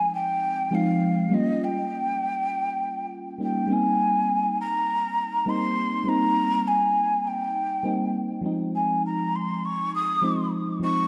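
A filter sweep passes over a round, full-bodied FM electric piano as this relaxed, sunny chillout excerpt opens, and a breathy jazz flute carries the melody from the first moment. At 101 BPM in a straight 4/4 and Ab major, the harmony moves from Fm9 and a rootless Eb7 to an Abmaj9 at 3.7 seconds, then settles on Fm7 at 8.4 seconds. The electric piano fills the accompaniment with a dark, soft tone, thickened by chorus and phaser, its notes striking quickly and then decaying. Above it the flute sounds hollow and crisp, with vibrato, a touch of chiff at the start of its notes, and a digital delay echoing its phrases. A lush hall reverb surrounds the pair, and the flute carries a distant quality even though both parts sit up front.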